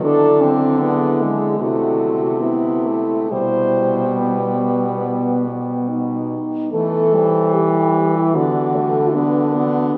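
Unhurried 4/4 with uneven, rubato beats carries this solemn, yearning classical passage for four French horns, cut from a longer piece. A mellow horn with vibrato sings the melody from the background, a dark, smooth-topped horn shapes a second line, another mellow horn with light vibrato gives accompaniment up front, and a clear, vintage-toned horn holds the bass, all set deep in a cathedral's long, wet reverb as if heard from further back in the room. The E-minor harmony moves through slash chords before a new section begins at 6.7 seconds.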